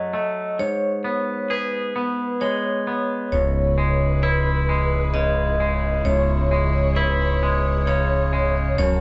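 A slow, straight 6/8 pulse moves at 44 dotted-quarter beats per minute in this brooding, melancholic rock excerpt in C# minor, tuned slightly low to A4 = 438 Hz. A clean, twangy electric guitar sits up front, picking arpeggios across a broad range, while a vibraphone struck with hard mallets adds ringing, airy arpeggios with a medium motor vibrato higher up. At 3.3 seconds, as the harmony settles from F#m and G#m onto C#m7, a growling fingered bass enters on a low C#, overdriven, punchy and up front. A dark, woody string section enters with it, bowing soft-attack sul tasto chords that lend a lush ensemble cushion. The band sounds as though it is playing live in one room, bathed in a wet studio reverb with a rolled-off top end, and all parts carry on until the cut at 9.0 seconds.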